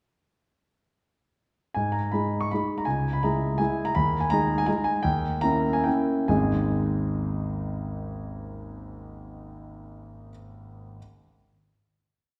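A concert grand piano, intimate and smooth with deep bass and audible action noise, plays a brief, wistful classical waltz alone from 1.7 seconds: a single-line melody over a waltz bass, shaped with nostalgic rubato as the harmony moves from C#m toward a D#7b9. The phrase slows from 3.4 seconds before settling on a final G# chord at 6.3 seconds. The vintage tone rings into a reverberant recital hall heard from further back in the room.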